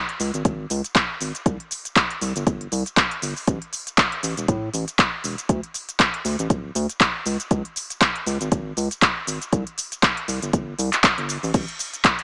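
Soulful and warm, this short deep house excerpt at 119 BPM rides a swung 16th-note groove, with an up-front drum kit of crash cymbal, handclaps, smooth hi-hats and shaker that sounds re-recorded in a small room, a tape-warm deep electronic kick entering at 0.5 seconds, and a round, dark analog bass ranging from D1 to A2 with a fast attack, sustained wave-folded tone and sidechain pumping, all heard through light reverb and a small-speaker sound.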